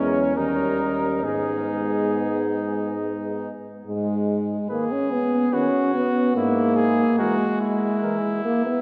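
Classical brass quintet music, heroic and grave, moves in a rubato 3/4 at around 68-73 BPM in G# minor, where a French horn with light vibrato sits up front, distant and roomy, over a smooth-topped trombone and a bass trombone that drops out at 7.0 s, while a clear trumpet carries the second line beneath a mellow cornet melody tucked into the background, all within a long, wet church reverb in this fragment cut from a longer piece.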